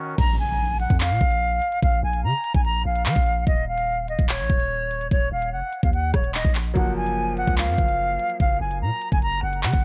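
An airy, distant concert flute carries the ominous, cold melody of this half-time drill excerpt in Bb minor at 146 BPM, filtered and echoed by analog delay over a long, deep sine 808 bass, an up-front drum kit with knocking kick, crisp hats, handclaps, rim clicks and crash, a background electronic impact from 0.2 to 1.8 seconds, and a bright concert grand piano that returns at 6.7 seconds as the harmony moves to Gbmaj7, all with the dulled, close sound of a home cassette recording.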